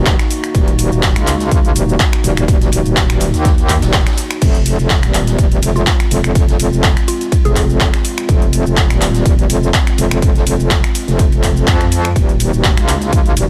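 A dark analog pad and a metallic wobble bass open this gritty, aggressive bass house excerpt at 124 BPM in 4/4, with a light swing on the sixteenths and a moody F phrygian cast. The bass sits up front, saturated and overdriven with chorus, its FM tone wobbling over sustained low notes while sidechain pumping ties it to the pulse; behind it the detuned pad holds deep, nasal chords with a slow attack and long release, also pumping. From 0.1 seconds a punchy, layered electronic kick drives the groove alongside a big-room dance kit of metallic hi-hats, handclaps, finger snaps, cabasa, crash and ride, both re-recorded in a small room, while a very quiet open jazz kit adds a high-tuned snare and dark ride cymbal with a natural studio sound. The harmony moves from Ebm to Fm at 4.4 seconds and back to Ebm near the end. Between 5.8 and 7.6 seconds a mellow, woody mallet-like pluck drifts in the background, its round, percussive notes coloured by phaser, chorus and dub echo. 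The mix is dry and loud, with a faint mains hum underneath.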